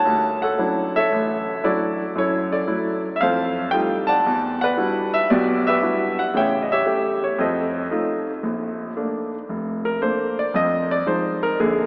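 A clear, up-front grand piano carries this short solo jazz excerpt on its own, its natural tone ranging from a deep F1 up to A5. The mood is warm and sophisticated, moving at 115 BPM in 4/4 with a swung eighth-note feel. Rich harmony opens in D major with a Dmaj9 and passes through F#m7, F9, Em9, A7 and F7 before shifting to Bb major at 8.4 seconds, where Bbmaj7 and Fm7 colour the closing stretch. A cathedral reverb with a long 5.5-second decay surrounds the instrument, giving the sense of a church or concert hall. That spacious glow meets a narrow, AM-radio character, lending the recording a broadcast-like cast. The passage is cut from a longer piece and breaks off at 11.9 seconds.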